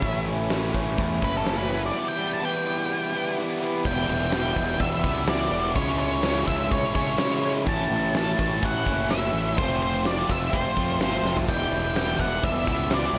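A dark, up-front octave-fuzz lead guitar solos through the first 3.9 seconds of this brooding, cathartic quiet-loud alternative rock excerpt at 126 BPM in E dorian, over a lo-fi, slightly broken-up arpeggiated guitar through a small old amp with phaser that stops at that point, while bright overdriven and thick fuzz guitars play riffs in the background, a fuzzed fingered electric bass holds the low end, and a huge arena drum kit with a fat snare and punchy kick plays a fill at 11.2 seconds inside a small room ambience.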